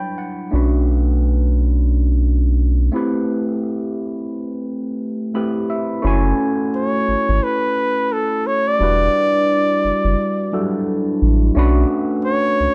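An overdriven tine electric piano opens this sultry neo-soul and R&B passage with a short fill, its barky, gritty tone run through a combo amp and colored by a phaser, sitting up front as it carries the chords. A deep, round analog bass joins at 0.5 seconds, its dark, sustained notes shaped by a filter sweep and a fast attack. The groove moves at a relaxed 87 BPM in 4/4 with a 60% swing on the sixteenths, drifting through minor ninth chords such as Em9, Bm9 and Am9 in F# phrygian. After a break and another piano fill, the second half shifts to F#m9. At 6.8 seconds a close-miked flugelhorn takes the solo melody, jazz-styled and soulful, with a soft attack, scooped notes and light vibrato lending a warm glow. A light, small-room reverb keeps the sound intimate in this fragment cut from a longer piece.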